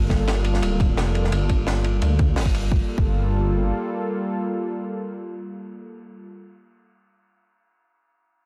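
A deep, rumbling detuned saw bass sits up front in this lush, dreamy liquid drum and bass snippet, its beating tone carrying the low end until 3.7 seconds under a smooth analog pad that sustains a Gm9 chord with chorus and sidechain pumping through 6.3 seconds. A punchy, overdriven electronic kick plays alongside a crunchy, saturated breakbeat kit with dark cymbals, a high-tuned snare and a rolled-off top, while a very quiet, gritty, pitched-up electronic hi-hat adds faint detail. Light reverb lends the mix a soft sense of space.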